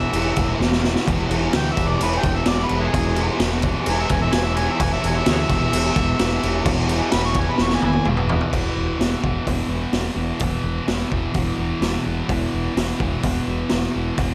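Rowdy and swaggering, this garage rock excerpt drives along at 128 BPM in a straight 4/4, rooted on an E5 chord in E major. An amplified, overdriven harmonica takes the lead as a solo, its gritty tone carrying light vibrato and tongue slaps before it drops out at 8.1 seconds. Underneath, a thick fuzz guitar riff sits up front, bright, picked and double-tracked, while a growling fingered electric bass adds overdriven weight in its low register. The raw drum kit plays throughout with a punchy kick, a high-tuned snare, hi-hat, crash and toms, its saturated, mid-forward sound up close in a small room with a rolled-off top, and a fill around 7.6 seconds ushers in a new section at 8.5 seconds. Light reverb surrounds the whole band, keeping the sound close and unpolished.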